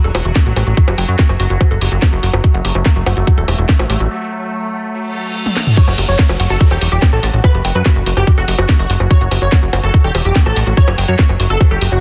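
A bubbling, resonant pad of randomly stepped filter chords and a woody, wave-folded pluck riff sit in the background of this hypnotic psychedelic trance passage, both pumping against the beat over a punchy, funky analog bass and a garage kit with cracking snare, bongos and toms, while a tight electronic kick sits up front from 0.4 seconds. After a break at 4.1 seconds, a very quiet reverse cymbal and downlifter and a drum fill lead into the drop at 5.8 seconds, where a detuned supersaw stab carries the melody through phaser, cassette tape and delay, joined by a grainy tube shaker. The mix is dense and heavily limited in a digital ambience, cut from a longer piece.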